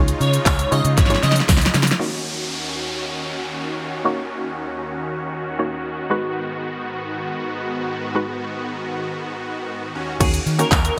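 Bittersweet and energetic, this slice of dance-pop opens on a full drop, with a punchy, layered pop drum kit of kick, fat snare, hi-hat, handclaps, shaker and crash sitting up front under gated reverb. A dark, round, foam-muted electric bass and a soft, dreamy lead, airy with vibrato, chorus and digital delay, ride on top, while a very quiet, jingly tambourine adds acoustic sparkle and a drum fill pushes toward the next section. By 2.0 seconds the lead, bass and drums have dropped away, leaving a hollow, nasal, bouncy square pluck and huge, lush supersaw chords pumping against the sidechain as a filter sweep works through them and an electronic downlifter falls in the foreground. The harmony moves through minor seventh chords beneath this filtered passage before the drums, bass and lead return at 10.2 seconds, with the tambourine following at 10.7 seconds. The whole cut carries a bright 1980s-style digital sheen with a moderate plate reverb.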